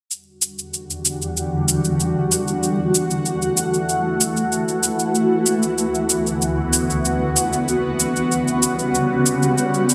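A straight 4/4 pulse at 95 BPM comes from an up-front, layered and overdriven electronic cabasa starting at 0.1 s. At 0.9 s a shimmering, ethereal pad joins with octave-up sparkle, chorus, phaser and a slow-attack granular texture, sustaining chords from Em9 through F#m7, D69 and Gmaj7#11/C#. The result is a smooth, wistful sunset chillout passage in E dorian, bathed in lush hall reverb with a bright 1980s-style digital sheen.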